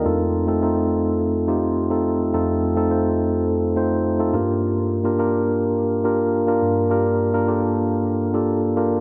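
A mellow tine electric piano plays alone throughout this short pop excerpt, sitting up front with a clean, warm tone heard through its built-in speakers. Its range stretches from F2 up to C5, and the harmony moves from F7 at the start to Gm7 at 4.3 seconds. The mood feels both urgent and nostalgic, carried by a straight 4/4 pulse. A moderate, lush hall reverb with a long 2.8-second tail surrounds the piano. The production is dark and warm, with the top end rolled off above 8.0 kHz.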